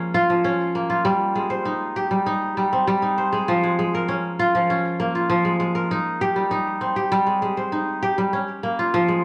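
A dark production sets a solo kora up front in a wet small room with tape echo, its acoustic, fingerpicked strings ringing bright and crisp against the darker surroundings. This playful folktronica fragment moves at 99 BPM in a straight 4/4 in Ab major, cut from a longer piece. Across its 9.2 seconds the harmony drifts from Bbm7 through Abmaj7 and Db6 before circling back to Bbm7.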